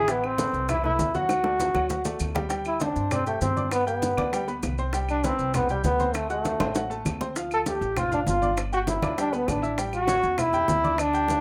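Salsa with a joyful, festive lift, this short section cut from a longer piece puts a clear, punchy trombone up front, singing the melody with vibrato and a roomy plate-reverb sheen. Behind it a bright, worn baby grand piano comps with audible action noise and short sustain, while a dark, thumpy pizzicato upright bass on gut strings anchors the low end. Ringing congas, round hard-hand bongos and distant woody claves sit in the background as grainy vintage maracas shake along, with drum fills around 1.3 and 6.6 seconds, all caught in a rough home-demo mix with a small, wet room sound.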